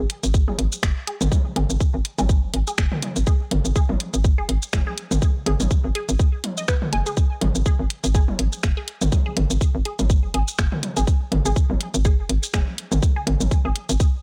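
A swung sixteenth-note groove in 4/4 drives this cool, sparse minimal techno excerpt, cut from a longer piece. A tight, up-front electronic kick anchors the pulse, while a garage kit of finger snaps, bright hi-hats and shaker fills in the top, joined by electronic toms that sound re-recorded in a large room. Underneath, a hollow, knocking FM bass sits low and punchy, with a fast attack and decaying notes, tube saturation and sidechain pumping giving it a bouncy push. A resonant blip pluck carries the riff higher up, squelchy and juicy with a sawtooth edge, a noise layer, a sub octave and a moving notch, treated with phaser, dub echo and sidechain pumping. The parts enter within the first half second and play on to the close of the excerpt, set in a digital ambience that keeps the mix produced.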